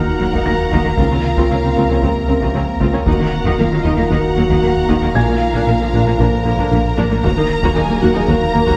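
Dark, distant French horns hold sustained chords over trombones, a warbly tape-like pad, a deep sine sub bass, a rubbery square-wave bass riff, a tuba, and very quiet cellos and double basses in this brooding, tense hybrid orchestral and electronic film cue at 115 BPM in Eb dorian, where lush vibrato violins carry a melody and a second line above portamento violas, a lo-fi detuned pluck arpeggiates, a felt-muted upright piano with tape echo and audible action noise adds texture until 7.3 seconds, and hard-stick taiko drums enter at 0.3 seconds in a moderate scoring-stage reverb.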